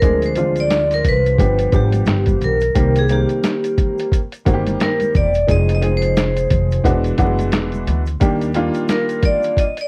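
Worn, warbling cassette tape with vinyl crackle and a moderate small-room reverb colors this cool, smooth jazz-hop clip at 88 BPM, swung on the sixteenths. A metallic, ringing vibraphone struck with hard mallets carries the solo melody with a slow motor vibrato over a slightly detuned, vintage upright piano, a woody pizzicato upright bass that stops at 8.7 seconds, and an overdriven, muffled, pitched-down sampler drum kit with a thumpy kick up front, while ringing tube shaker and congas sit in the background. The chords move from Dm7b5 and G7 to Cm7, then through Fm7 and E9 to Ebmaj7.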